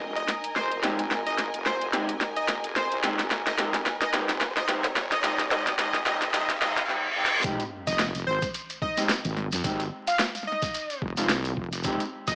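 Swaggering and gritty, this 109 BPM glitch hop cut in F minor swings through a build-up, where a cracking, overdriven drum kit with bright hats, a catchy, detuned plucky unison lead with tape echo, dark, slightly broken-up electric guitar stabs under a filter sweep and sidechain pumping, a heavy wobbling bass in the background, lush bowed strings that drop out at 6.9 s, and a riser, reverse cymbal and sub drop lead into a drop at 7.4 s, when a thumpy, pitched-down electronic kick and a grainy shekere join, all under vinyl crackle and a small-speaker sound.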